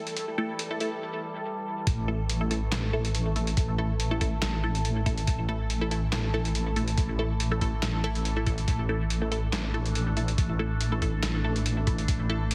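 Opening on a resonant, overtone-sweeping drone with chorus and a bright, phased dub chord stab with echo over an A5 chord, this dark, heavy deep dubstep excerpt at 141 BPM in half-time, with a 54% swing on 16ths, brings in a muffled, tape-warm trip hop drum kit of handclaps, hi-hat and medium-tuned snare, a thumpy pitched-down electronic kick and a brief, very quiet flickering grainy texture during the build-up, before the drop at 1.9 seconds introduces an up-front, deep, detuned wobble bass on A1 with chorus, all under light digital reverb and a heavily compressed radio-like sound.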